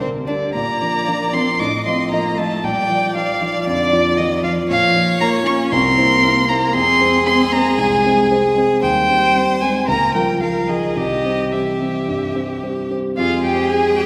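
Set in a quick 4/4 at 114 BPM, this classical-period movement for piano quartet moves with a rubato feel, its pulse pushing and yielding in a dramatic, restless mood. A warm, smooth-toned violin carries the melody up front from D5 to D6, its single bowed line even and rich with vibrato. A second violin, clear, focused and close, with vibrato, plays a supporting line lower down, while a cello with soft attacks and expressive portamento adds its own line from the background. A dark, mellow concert grand piano with deep bass and short, vintage-sounding sustain provides the accompaniment near the front of the sound. The harmony opens around G minor and B-flat before settling into F minor at 4.7 s. The quartet sits in the lush reverb of a church or concert hall, and the passage is cut from a longer piece.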